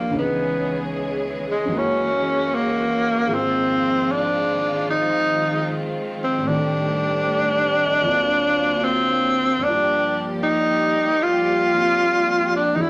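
Jazz ballad at 76 BPM in 4/4 with a swing feel, this romantic, intimate fragment of a longer piece moves through Dbm7, Gb9 and Ab6 before shifting to Am7b5, D7alt and Gm7. A breathy tenor saxophone sits up front with the solo melody, its vibrato and scooped notes giving a punchy yet smooth-topped jazz voice. A warm grand piano with audible action noise accompanies across a broad range, while a lush bowed string section holds smooth, even chords, all three parts playing across the full 12.9 seconds within a reverberant studio room.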